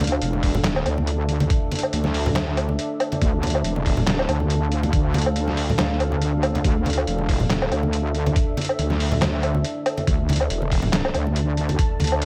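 This heavy, cavernous deep dubstep excerpt opens with a dark, moody pad holding sustained D minor chords, its detuned sawtooth and sine layers carrying a sub octave, a moving notch, a slow attack, chorus and its own reverb. Beneath it, an up-front wobble bass growls low with a saturated, compressed sawtooth and sine unison tone, chorus and a fast attack. A trip hop sampler-style kit of handclaps, hi-hat, woodblock and a medium-tuned snare sounds pitched down, muffled and tape-warm, as if re-recorded in a small room. Bright, saturated congas struck with hard hands sit in the background. At 0.4 seconds a compressed, thumpy electronic kick joins, carrying the same pitched-down, re-recorded character. The groove moves at 140 BPM in 4/4 with a half-time feel and a 55% swing on the sixteenths, all resting on a single D minor chord through to 12.2 seconds under a light reverb.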